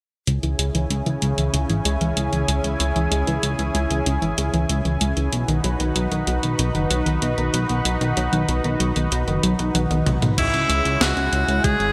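A moody, nocturnal synthwave passage opens with a lush, thick unison pad holding sustained chords, its detuned sawtooth voices warbling with chorus and a vintage sampler grit, while a glossy chorused synth bass with tube saturation sits up front. Alongside them, a clean 12-bit digital drum machine plays crash, hi-hat, a medium-tuned snare and toms through gated reverb, and a round analog pluck runs arpeggios in the background with chorus and digital delay. Filter sweeps move through both the bass and the pluck as the chords shift from C#m to B, and a drum fill arrives at 9.7 seconds. At 10.4 seconds the pluck drops out, a thumpy electronic kick joins, and an edgy alto saxophone steps forward with scooped, pop-style solo notes carried on a delay. The bright 1980s-style digital production sits in a lush hall reverb, and this excerpt is cut from a longer piece.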